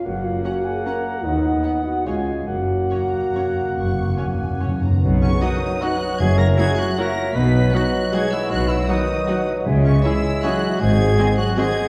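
A swaying three-beat waltz lilt, stretched and eased by rubato, carries this sweeping, elegant orchestral ballroom passage, cut from a longer piece. A rich chamber violin section sings the high melody over a very quiet, lush second violin line, a smooth viola accompaniment, and a bass of smooth bowed double basses and distant, expressive cellos. Around them, woodwinds weave soft parts: a hollow silver flute with pure tone, a dark clarinet and a roomy cor anglais trace second lines while a clear bassoon accompanies, all set over mellow sustained French horn chords. Timpani with medium mallets play a fill from 2.5 seconds, and at 5.0 seconds the harmony shifts and a mellow tuba joins the bass. From 5.4 seconds a very quiet trombone section adds held chords while a tight trumpet section places gentle stabs, all blooming in the generous reverb of a recital hall.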